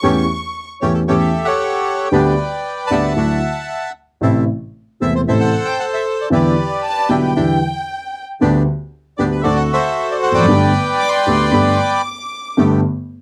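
A reedy, bright bandoneon carries the melody from 0.8 seconds in this nostalgic, elegant tango, played rubato around 115 BPM in G major, while a second, darker bandoneon adds stabs and a mellow, woody upright piano with long sustain holds down the accompaniment up front. A smooth studio violin section with vibrato plays briefly at the start and returns as a second line from 6.8 seconds. The dry, close 1970s-style studio sound carries light reverb, and this cut from a longer piece moves through chords such as Am, Em7 and D7 before settling on Gadd9.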